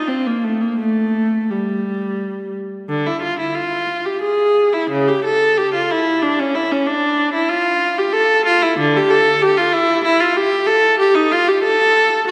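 A rich, focused solo viola, bowed with vibrato and placed up front, carries this introspective, solemn baroque-style suite movement in 3/4 at a flexible rubato pace of roughly 83-96 BPM, ranging from C#3 to A4 and blooming into a long, wet church reverb across this 12.3-second fragment of a longer piece.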